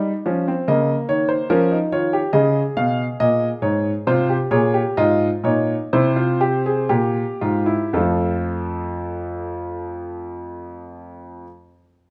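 A smooth, vintage baby grand piano sits up front in a solemn, serious baroque-style three-part fugue in 4/4 at 58-74 BPM, slowing over the first 7.9 seconds as the harmony moves from Db through Bbm/Db, Db7, Fm and C7 to arrive on F, with the solo instrument spanning F2 to F5 and ringing into a moderate recital-hall reverb through close, detailed microphones until it stops at 11.5 seconds in this fragment of a longer piece.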